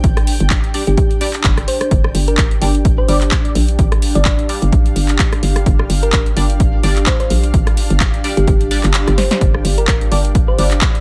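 A bouncy, gritty bass house cut at 128 BPM in G phrygian opens on a G5 chord, with a hollow, knocking FM bass, pushed up front with overdrive and sidechain pumping, alongside a punchy electronic kick and a house kit of handclaps, hi-hat, rim click and snare, while a blurred granular cloud pad with its own reverb drifts behind. Moments later a nasal, band-passed sawtooth chord stab arrives, treated with phaser, ensemble chorus and digital delay, followed by a round, tine-like thumb-piano-like pluck that warbles through chorus and delay. The kick drops out from 8.9 to 9.4 seconds as a drum fill lands at 9.2, all on a 16th-note swing in a dry mix.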